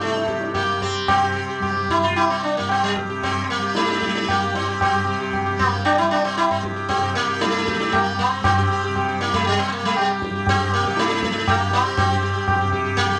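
Closely miked and lightly reverberant, this longing, introspective Hindustani classical excerpt moves in an uneven 7/4 at 116 BPM and speeds up as it goes, with a buzzing, plectrum-plucked sitar carrying the melody up front amid the shimmer of its sympathetic strings, a bright, softly plucked tanpura drone humming beneath, and a high-tuned, ringing tabla sounding distant in a large room throughout.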